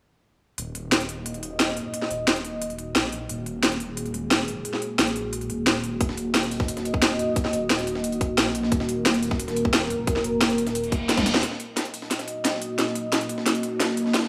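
A moderate, lush hall reverb with digital ambience wraps this dark technical drum and bass excerpt, cut from a longer piece, aggressive and tense at 177 BPM in a straight 4/4 and centred on Eb minor. A moody analog pad of detuned sawtooth and triangle tones with a sub octave holds slow-attack chords, coloured by chorus and phaser and pumping against the sidechain. Beneath it, a thick, swirling detuned saw bass with a fast attack sits low in the mix, its saturated tone carrying phaser, overdrive and the same pumping. Up front, the main drum kit brings a cracking snare, crisp hats and toms with a tape-warm, layered edge, joined at 6.0 seconds by a tight electronic kick and a gritty, pitched-up breakbeat kit in the background with its high-tuned snare and filtered hats. From 10.9 seconds a reverse cymbal and riser sit behind the drums, then a drum fill, filter sweep and build-up carry the closing stretch from 11.4 seconds as the bass and kick drop away.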